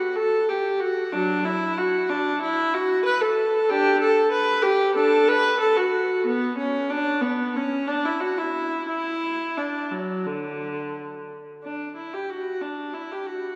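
The rhythm moves in a supple, rubato four-beat metre, giving this classical, baroque-style suite movement a dance-like, flowing character. A lone viola carries everything from 0.0 to 13.6 seconds, played bowed by one player and ranging from D3 to B4. Its tone is rich and focused, shaded with vibrato, and it sits up front in the mix. A wet church reverb with a 3.2-second decay surrounds the instrument, lending a lingering, resonant space typical of a church or concert hall. The opening idea unfolds over the first 11.6 seconds before it begins again, and the fragment ends there, cut from a longer piece.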